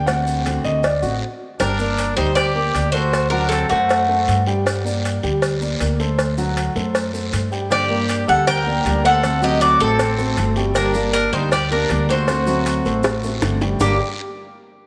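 A metallic, double-strung Cuban tres carries the melody with a slapback echo, entering at 1.6 s alongside a present trumpet second line after a dark, vintage grand piano solo opens the cut with its action noise audible. Both then drop out and return at 7.7 s, joined again by a full-bodied picked steel-string guitar with finger squeak. This danceable, sultry Cuban son and guajira rides on an up-front, woody, growly pizzicato upright bass, round low-tuned bongos with cowbell played with soft hands, a raspy guiro and grainy, distant maracas. An echo chamber and small-room ambience add a wet sheen, and a drum fill at 13.0 s leads into the final section of this cut from a longer piece.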